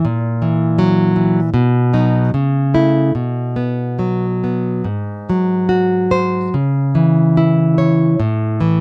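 Rubato in 2/4 at roughly 70-83 BPM, this tender, nostalgic romantic piece for solo classical guitar, cut from a longer work and tuned to A4 = 438 Hz, places a fingerpicked nylon-string guitar with warm fresh strings up front in a dry, close 1970s-style studio sound touched by light reverb, moving through F#7/A#, B and A/C# before shifting at 4.9 seconds to a passage built on G#7, C#m and A5.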